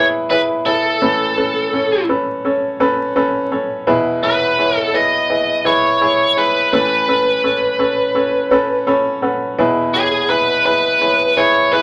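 In a straight four-four feel, this hopeful pop excerpt sets a bright, biting, picked electric guitar melody with overdrive up front over clear, woody upright piano accompaniment with short sustain, moving between E and Aadd9 with a brief piano fill at 8.5 seconds, heard in a wet small room with vinyl crackle.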